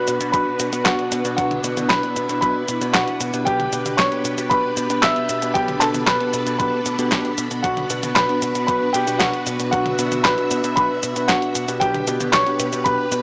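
Bittersweet and danceable, this short italo disco cut in B minor moves at 115 BPM as a smooth, up-front grand piano carries the melody through analog delay over lush, sawtooth-edged string machine chords with ensemble chorus, clean tine electric piano stabs, a dark, round picked bass, a thumpy background kick and a 12-bit drum machine with a fat snare, handclaps, cabasa, hi-hat and toms, all wrapped in light digital ambience and a gritty cassette, small-speaker sound.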